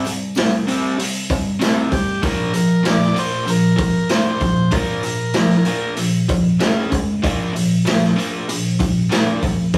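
A straight 4/4 beat from a raw, gritty garage drum kit with hi-hat, punchy kick and medium-tuned snare drives this swaggering garage rock excerpt, as an up-front, double-tracked overdriven electric guitar riff moves through C5, Bb5 and C#5 chords, a buzzy vintage combo organ carries the melody from 1.9 to 5.9 seconds, and a very quiet, jingly tambourine sits close and dry in a rough rehearsal-room sound with moderate reverb.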